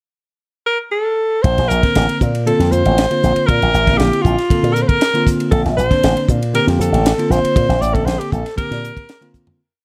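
Funky and slick, this short electric jazz fusion piece opens with a clear, forceful alto saxophone singing a motif-based jazz melody with vibrato and plate reverb, joined at 1.4 seconds by a punchy, syncopated slap bass riff through an envelope filter and a tight funk drum kit with bright cymbals and a high-tuned snare, while a bell-like tine electric piano adds clean, syncopated drop2 chord stabs to a groove that fades out from 7.6 seconds before a drum fill at 9.3 seconds.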